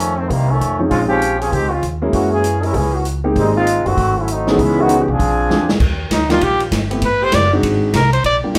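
A bright, tight trombone section carries a joyful, energetic big band swing passage with a roomy vibrato, backed by woody pizzicato upright bass, a punchy swinging drum kit and a warm grand piano that enters at 0.8 seconds. After a drum fill, a forceful, present trumpet takes the solo at 6.1 seconds with light vibrato, while a clear saxophone section holds sustained chords in the background. The whole band sits in a wet club reverb, heard from further back in the room, in this short cut from a longer piece.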